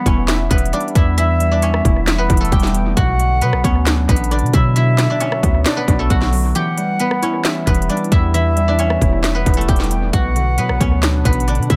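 Menacing and melancholic, this half-time hip hop and trap passage at 134 BPM moves between Em and Bm. A bright, ringing guzheng played with fingerpicks carries the melody through a low-pass filter and analog delay, while an airy silver concert flute with vibrato adds a soft second line. Glassy, detuned digital keys with chorus and a filter sweep provide accompaniment. A deep, boomy 808-style bass and an up-front trap kit, with its hard-clipped kick, sharp snare, crisp hats, claps and rim clicks, drive the low end. A warbling, lo-fi tape-like pad with phaser drifts in at 6.5 s just before a brief break at 6.6 s, all within an echo-heavy mix of light reverb and digital ambience.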